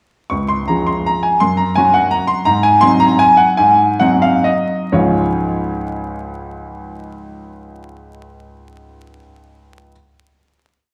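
A wet recital hall reverb and vinyl crackle frame this short, complete classical piano waltz in Db major, heard from further back in the room. A clear, natural baby grand with short sustain plays solo from 0.3 seconds, carrying a graceful, playful single-line melody over a waltz bass in 3/4, ranging from Db2 to Db6. The rubato tempo moves between 120 and 174 BPM as the harmony passes through Db, Gb5 and Ab7, slowing from 2.0 to 4.9 seconds before settling on a final Db chord that rings until 7.8 seconds.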